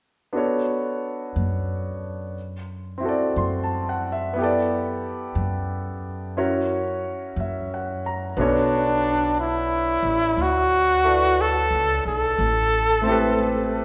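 A reverberant recital hall surrounds this wistful, intimate jazz ballad fragment, cut from a longer piece and carried by a gentle swing. A clear baby grand piano, close and natural with its action noise audible, opens the accompaniment at 0.3 seconds, moving through Bm7, D7, G6 and F#7. An upright bass joins at 1.4 seconds, its woody, pizzicato steel-string tone sitting low beneath the keys. At 8.4 seconds a breathy trumpet takes the melody as a solo, up front and whispered, with a soft attack and vibrato in a jazz style. The harmony settles onto Bm9 and then Am7 as the horn sings over the piano and bass until the fragment ends.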